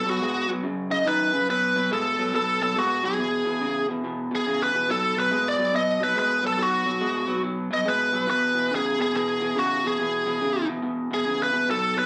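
A bright, overdriven lead guitar cuts through up front, picking a gritty blues melody between F#4 and D#5 with a slapback echo on its tone, and it opens the clip with a solo in the first 1.5 seconds. Underneath, a second electric guitar plays a riff from E2 to G#3 through a small old amp, its sound warm, slightly broken-up, compressed and lo-fi, also carrying slapback echo and sitting up front. The groove is laid-back, in 4/4 at 141 BPM with a swung eighth-note feel, set in B mixolydian and tuned to A4 = 442 Hz. The harmony moves from B5 and F#5 into a passage that shifts between B5 and E, with a new section starting at 1.5 seconds. The recording captures a live gig heard through the venue's PA, with light club reverb, and the clip is cut from a longer performance.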